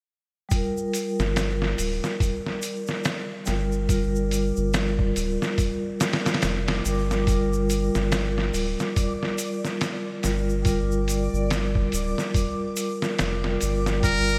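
A smoky, hypnotic trip hop fragment opens at 0.5 s with a ringing vibraphone carrying tremolo and tape echo, a gritty, pitched-down sampler drum kit with a thumpy kick, and a saturated tube shaker in the background; a round, deep analog bass and a dreamy reversed swelling texture soon join over a lone Gm7 chord, set in a lush hall reverb with bright 1980s-style digital production, before a buzzy muted trumpet steps up front at 14.0 s.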